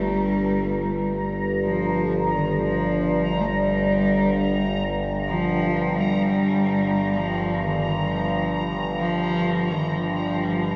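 A dark ambient drone excerpt, unsettling and desolate, held on a single G minor chord for its 10.8 seconds. Up front, a resonant sawtooth-and-sine drone with moving overtones sustains in the low register, while a solo cello plays an intimate, airy melody sul tasto with vibrato and a soft attack, its line trailing into a diffuse ambient delay. High above, a mellow, detuned texture bubbles through random filter steps, and the whole mix is soaked in a huge, dreamy reverb.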